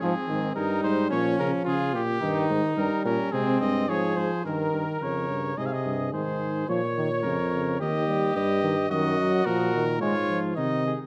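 This classical brass canzona in 4/4 moves at 108 BPM with a straight, solemn yet driving feel, and is cut from a longer piece. A punchy trumpet with vibrato carries the melody up front, ranging from G4 to F5, while a clear, close-miked flugelhorn plays a second line between C4 and Db5. Beneath them, a warm, close-miked trombone supplies accompaniment from C3 to Ab3, and a tuba with light vibrato and a vintage character anchors the bass from Eb2 to Db3. All four play together throughout, with the harmony moving through Ab, Bbm and Eb/G before a second section begins at 4.5 s and passes through Ebm/Gb to close on Db/Ab at 10.0 s. A moderate recital hall reverb of 1.4 seconds surrounds the ensemble.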